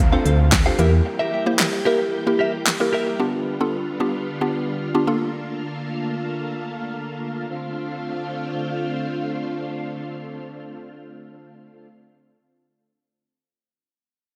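A straight 4/4 house drum kit with punchy kick, crisp hats and handclaps enters at 0.3 s to drive this energetic, driving dance-pop piece in D minor at 112 BPM, joining a round, dark FM bass that opens the track and stops at 1.0 s and a scooped, compressed clean electric guitar riff that ends at 3.2 s alongside a very quiet downlifter. A woody, mallet-like synth pluck with chorus, phaser and sidechain pumping carries the accompaniment until 5.3 s, while a vintage, warbling organ-string ensemble holds sustained chords through Dm7, Edim, G7 and Bbmaj7. Bright 1980s-style digital production and a lush hall reverb frame the track.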